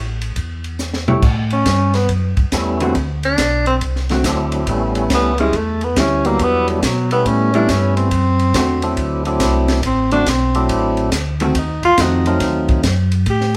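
A swinging 140 BPM tune with swung eighths in 4/4 opens this bluesy soul jazz organ trio fragment, with a mellow, round tonewheel organ holding the low bass line through a slow rotary speaker and a compact cocktail drum kit, dry with dark cymbals, a high-tuned snare and a punchy kick, entering at 0.2 seconds and snapping out a fill at 0.8 seconds. From 1.2 seconds a smooth-topped tenor saxophone takes an up-front solo with light vibrato over chords moving between A7, D7 and Em7, while a dark, picked hollow-body electric guitar comps underneath. A second, percussive tonewheel organ with key click and slow rotary joins the melody at 2.5 seconds, all set in a moderate large studio reverb that keeps the band sounding live together.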